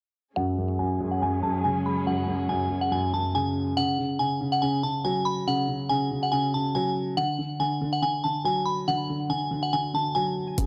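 A glassy, warbling synth bell carries the melody in this dark, tense drill excerpt at 141 BPM in a half-time feel in F# minor, its crystalline tone treated with chorus, tremolo and a low-pass filter over a mellow, boxy grand piano whose action noise stays audible. A bowed string section with vibrato and portamento holds sustained chords until 3.7 s beneath a filter sweep, all within a small, gritty room carrying light reverb. Only at 10.6 s do a punchy, tight 808-style bass and metallic electronic hi-hats strike, just as the cut ends.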